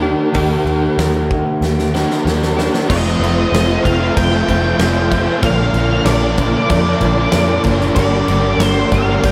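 A dark octave-fuzz lead guitar, steeped in distortion and delay, enters at 2.9 seconds with a high melody over this wistful, blissful shoegaze and dream pop passage cut from a longer piece, where a warm overdriven semi-hollow guitar with analog chorus and a compressed, direct-recorded clean electric guitar with reverse reverb play riffs, a very quiet, shimmering twelve-string acoustic guitar picks arpeggios, a round, foam-muted vintage electric bass holds the low end, and a huge arena drum kit with a fat snare and punchy kick comes in at 0.3 seconds and plays a fill from 1.6 seconds, the whole dreamy mix soaked in lush hall reverb.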